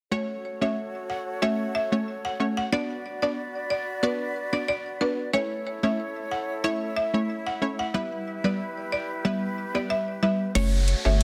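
A straight 4/4 dancehall groove at 92 BPM sets a tough, bouncy mood in this short cut from a longer piece, moving through F#m, Bm, A and Em before returning to F#m. A buzzing marimba struck with hard mallets carries the melody, its woody, percussive bars touched with delay, while an analog pluck sits up front as accompaniment, full-bodied and sawtooth-edged with a noise layer, a filter sweep and chorus. Alongside them a breathy flute section holds sustained chords, its vibrato and lifted highs lending an expressive sheen. Only at 10.6 s do a round sine sub bass, metallic electronic hi-hats and an electronic downlifter arrive, running to the end at 11.2 s. Light reverb and small room ambience surround the parts, and the master is dense and heavily limited in a modern style.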